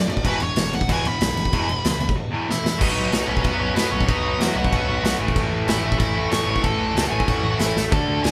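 Upbeat and rowdy, this short punk rock cut at 188 BPM opens with a nasal, parked-wah lead guitar soloing over a biting overdriven riff guitar and a brighter cranked stack guitar set back in the mix, while a fuzzy, punchy picked bass sits underneath. A big acoustic rock kit with a punchy kick and crash cymbals plays up front, kicking in at 0.1 seconds and firing a fill just before the band shifts into a new section at 2.8 seconds, where the chords move from B to A. The whole band sounds like it is playing live in one room, with light reverb.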